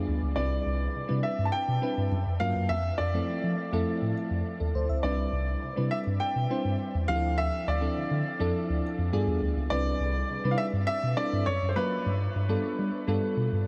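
In a straight 4/4 feel, this breezy, upbeat cut of polished 1980s jazz-funk pop sets a mellow tine electric piano on bass beneath a bell-like, sparkling FM electric piano with analog chorus playing accompaniment and a brief fill at 8.8 seconds, while a clear, intimate grand piano with audible action noise and diffuse delay carries the melody from 0.4 seconds over chords such as Cmaj9, Dm9 and G7b9, all in a dreamy mix soaked in huge ambient reverb.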